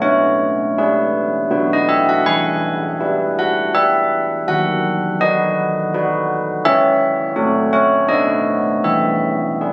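A solo carillon opens this festive yet serene classical church-bell tune, a short portion of a longer piece in E major at 82 BPM in a steady 3/4. Bronze bells with an iron-clapper strike and a prominent minor-third overtone ring up front from D#3 to G#5, moving through a simple progression from E/B toward B7 at 8.1 seconds before settling on E at 8.8 seconds. Captured on a phone in a concert hall, the sound carries a moderate 2.4-second reverb tail.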